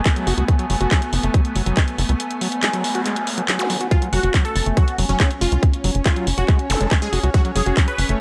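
A tight, punchy sequencer bass stands up front, its nasal filter-plucked sawtooth tone driving this hypnotic, alien psychedelic trance excerpt from the first moments. Beneath and around it, a squelchy, gritty acid bass riff growls through distortion and tape echo, while an electronic kick sits up front beside a garage kit of handclaps and warm hi-hats. A swarming, tense drone holds sustained chords in a granular, evolving haze, and a warbling, lo-fi pad drifts in the background with chorus and phaser, both of them pumping with the sidechain. The kick drops out from 2.2 to 3.9 seconds as an electronic noise sweep moves through the background, with a brief zap near 6.7 seconds. From 3.9 seconds a detuned supersaw stab carries the melody, its plucked, phased notes trailing dub echo through a light digital ambience.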